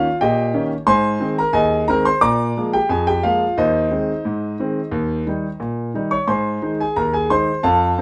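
A solo concert grand piano opens this lively, jaunty ragtime fragment in Ab major at 89 BPM in a straight 2/4, tuned to A4 = 444 Hz, sitting up front with an intimate, boxy tone, deep bass, long sustain and audible action noise in light reverb as it spans Eb2 to D6 over Eb7, Ab, Bb7 and Ab/Eb chords before settling on Eb and then Ab at 6.3 seconds.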